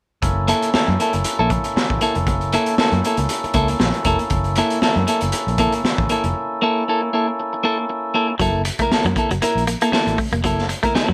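Playful and strutting, this funk excerpt moves at 118 BPM in 4/4 with a light swing on the sixteenths, built around an F#7#9 chord and set in a moderate spring reverb. A crunchy breakbeat kit of kick, snare and hi-hat sits up front with a punchy kick, a high-tuned snare and a gritty, saturated sound whose top is rolled off. A vintage fingered electric bass, foam-muted, amped and round, holds the low end alongside it from 0.2 seconds to the close. A clean, bright electric guitar plays picked, compressed, scooped accompaniment up front from 0.5 seconds, while a percussive tonewheel organ, lightly overdriven with key click and third-harmonic percussion, holds sustained chords until 8.4 seconds. At that point a second clean guitar, twangy and picked, enters with a riff for the closing section.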